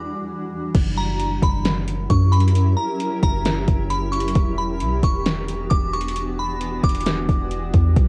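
A half-time 4/4 groove from a smooth R&B drum kit, with soft kick, fat snare and metallic hats up front and a cassette-tape haze, arrives at 0.7 seconds alongside a deep, round 808-style bass, joining a blurred, evolving granular cloud pad that pumps beneath its own reverb and a crystalline FM glassy synth bell melody smeared with chorus, cassette tape and analog delay, giving this ethereal, hazy cloud-rap excerpt its drifting home-cassette ambience over Em9 and F#7b9 chords.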